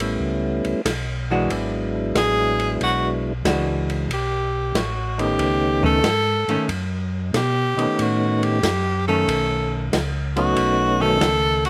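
Greasy and swinging, this short cut from a longer soul jazz organ trio piece moves at 92 BPM in 4/4 with a 68% swing on the eighth notes, over A9, E9 and B9 chords. A round, percussive tonewheel organ carries a melody through a slow rotary speaker and slapback echo, while a second, mellow tonewheel organ plays the bass line with vibrato, audible key click and its own slow rotary sway. An open jazz drum kit with hi-hat, ride, a medium-tuned snare, a boomy kick and dusky cymbals keeps the groove smooth. A clean, picked hollow-body archtop guitar joins at 1.3 seconds with dark accompaniment touched by slapback echo. At 2.2 seconds a bright tenor saxophone steps up front for a vibrato-laden jazz solo. The sound is dry, recorded outdoors with little reverb.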